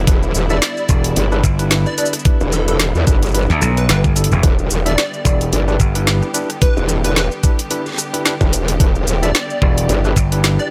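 A dry, close mix with little reverb carries this short glitch hop excerpt at 110 BPM in 4/4, its sixteenths swung for a swaggering, funky strut in E minor pentatonic over a single Em7 chord. Up front, an overdriven electronic kick knocks hard beside a layered drum and bass kit of woody snare, bright hi-hats, rim clicks and shaker. Two basses share the low end: a growling, wobbling formant-filtered synth bass with chorus and tube saturation sounds throughout, while a gritty, punchy slap bass plays from 0.9 to 6.2 seconds and returns at 9.6 seconds. Above them, a worn, slightly out-of-tune tine electric piano jabs out overdriven stabs through digital delay and sidechain pumping, and a catchy detuned square-wave unison lead with a noise layer, filter sweep, cassette-tape coloring and delay carries the melody from 0.5 seconds. Far back in the mix, a lush bowed symphonic string section holds sustained chords with vibrato, pumping under the sidechain.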